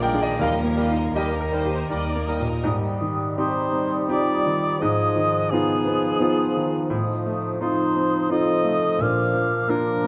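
A lush, lyrical classical passage in a gently rubato triple metre opens with a clear, smooth grand piano carrying the melody up front, briefly joined on the melody by a pure, floating studio violin section. Around it, an airy, hollow flute section and a warm cor anglais with vibrato weave second lines, along with a symphonic violin section in the background. A woody viola section with vibrato and a bassoon fill in the accompaniment, while a distant cello section and a soft-attacked double bass section, both bowed sul tasto, anchor the bass, and a dark, roomy clarinet adds a further inner line. At 0.4 seconds a distant French horn section settles into sustained chords, and very quiet timpani struck with hard mallets sound briefly. The strings fall away by 2.7 seconds as the harmony moves to Abmaj7, leaving piano, woodwinds and horns to carry the music through a Fm7b5/Ab chord toward Bb. 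The sound sits in a moderate concert-hall reverb captured by close, detailed microphones.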